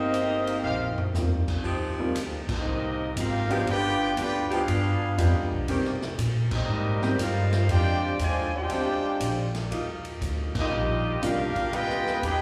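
A joyful, swinging big band jazz excerpt in Eb major at 119 BPM, where a mellow saxophone section opens the melody before a clear trumpet section stabs briefly and the warm trumpet section takes over the tune from 2.5 s with light vibrato, over a trombone second line with slapback echo, woody pizzicato upright bass, a clear upright piano with long sustain, sustained saxophone chords and a big-room drum kit with a punchy kick whose fill at 0.6 s is later followed by band accents, all heard in a moderate club reverb like a live gig through the venue's PA.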